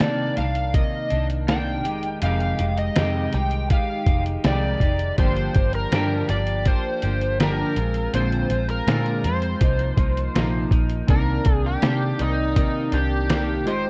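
Mellow and hazy, this short cut of indie bedroom pop drifts over ninth and seventh chords, with an overdriven slide guitar carrying the melody through analog chorus while a clean electric guitar picks beneath in lush chorus and warbly pitch drift. A dark, foam-muted picked bass and an up-front, pitched-down sampler drum kit with a thumpy kick, fat snare, hi-hat and 12-bit grit anchor the groove. At 11.1 s the slide guitar takes a solo as detuned, nostalgic synth keys join, all wrapped in light reverb and the wobble of worn cassette tape.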